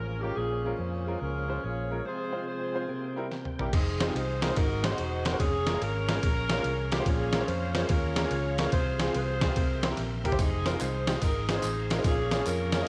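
Uptempo gospel in F minor at 144 BPM with a swung feel, fervent yet solemn, where a mellow, tight saxophone section carries the melody with vibrato and slapback echo over a very quiet, lightly overdriven tonewheel organ with slow rotary, a dark, round fingered electric bass and a bright, woody upright piano with audible action noise, while a gritty, pitched-down trip hop sampler-style drum kit with a thumpy kick enters on a fill at 3.3 seconds and tambourine and group handclaps join in the background at 10.4 seconds, set in a small room with light reverb.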